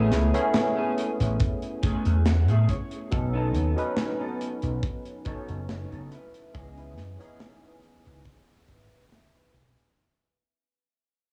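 A slow, straight 4/4 pulse at 70 BPM anchors this woozy, nostalgic vaporwave fragment in C# minor, with a polished, airy acoustic kit of hi-hat and medium-tuned snare in gated reverb, and a punchy kick that enters up front at 1.4 seconds. Underneath, a warm vintage slap bass, amped and driven through tube saturation, sits prominently in the low end. A barky tine electric piano heard through a combo amp carries the accompaniment, clean and forward with analog chorus and tape echo. A picked clean electric guitar plays the riff, its tone shaped by chorus, 12-bit sampler grit, a low-pass filter and tape echo, with a filter sweep running throughout and fills at 1.4 and 8.7 seconds. The harmony moves from Amaj7 to B7 to C#m7 beneath a cassette-tape sheen and light studio reverb, and the whole passage fades out as a piece cut from a longer work.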